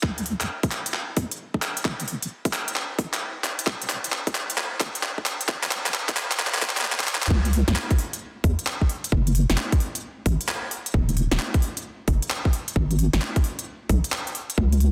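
A skippy two-step garage groove in 4/4 at 132 BPM, with a 65% swing on the sixteenths, gives this moody UK garage piece in C# minor its loping shuffle. The electronic kick drum is tight and layered, and the garage drum kit adds a cracking snare, crisp hi-hats and handclaps. Both drum parts sit up front with a tape-warm character and the roomy air of a large space. A deep, dark wobble bass ranging from D#1 to G#2 sits just as close, its warm triangle-and-sine tone shaped by a fast attack, sustained notes, saturation, compression and a touch of chorus. The opening until 7.3 seconds is a build-up carried by a drum fill, and the drop at 7.3 seconds runs on to the end of the cut at 14.9 seconds. Light reverb surrounds a dense, heavily limited modern master with a high-pass filter.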